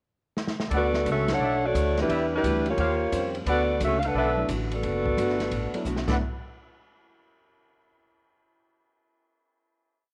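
Brassy and energetic, this complete big band swing piece in D major moves at a brisk 175 BPM with a firm swing feel. A drum fill on the open jazz kit kicks things off at 0.4 seconds. Upright bass then walks underneath in a thumpy, woody pizzicato while the sticks keep a ride cymbal pattern over dark cymbals and a boomy kick. From 0.8 seconds the saxophone section carries the motif-based melody up front, tight and smooth-topped with vibrato, harmonised in four-part block voicing. The trumpet section adds syncopated stabs in close voicings, and both horn sections carry a cassette tape colour. Deep in the mix, a baby grand piano comps in rootless voicings with audible action noise, and a full-bodied dreadnought acoustic guitar strums jazz chord shapes through a progression from D6 through Bm11, Em7 and Eb13 back to D6, before a final hit lands at 6.2 seconds in a lightly reverberant home cassette recording.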